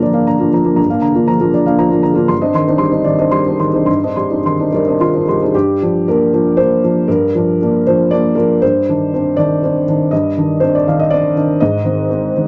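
A felt-muted upright piano opens on a rootless Gm7, its tone soft, dark and boxy, placed up front and intimate in the listener's ear. This wistful, melancholic fragment of neoclassical minimalist piano sits in C minor and moves in 3/4 with a rubato feel, drifting between roughly 104 and 123 BPM. The solo piano spans G2 to C6, alternating Gm7 with Cmadd9 over G, and a second passage beginning at 5.5 seconds returns to that same pairing before turning to Ab at 11.6 seconds. A short, moderate booth ambience surrounds the instrument, and the sound tops out around 7.6 kHz, keeping the mellow character close and hushed. Cut from a longer piece, the excerpt ends at 12.5 seconds on that unresolved Ab.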